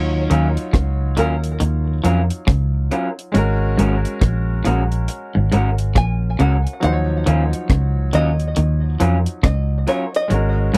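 The rhythm moves in a slow 4/4 at 69 BPM with a swung sixteenth-note feel. At 0.3 seconds a deep, dark reggae kit enters with tight kick, hi-hat and rim click, its top rolled off, alongside stabs from an electric guitar through a small old amp that sound slightly broken-up and lo-fi. This lovers rock passage in Eb minor feels bittersweet and smooth, moving from Ebm9 to Ab9sus4 and back to Ebm9. A vintage foam-muted fingered electric bass carries a round, amped low end up front, while a clean, compressed electric guitar plays a riff in the background. An open-back banjo fingerpicks a twangy, plunky melody, and a clear grand piano with audible action noise and long sustain supplies the accompaniment, both touched by tape echo, all within a dry, close 1970s-style studio sound cut from a longer piece.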